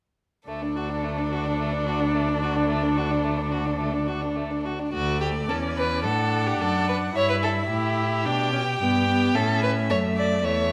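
A straight 4/4 pulse at 109 BPM drives this graceful, spirited passage from a quick classical-period movement for string quartet in D major, tuned to A4 = 441 Hz, where a bowed solo violin carries the melody above a second violin placed up front on the second line, with viola accompaniment and a cello bass that is also up front and smooth on top, all four rich, focused and vibrato-laden from 0.5 to 10.7 s, as the harmony moves from D through Em/G to A and a new section begins at 4.9 s within a moderate recital hall reverb.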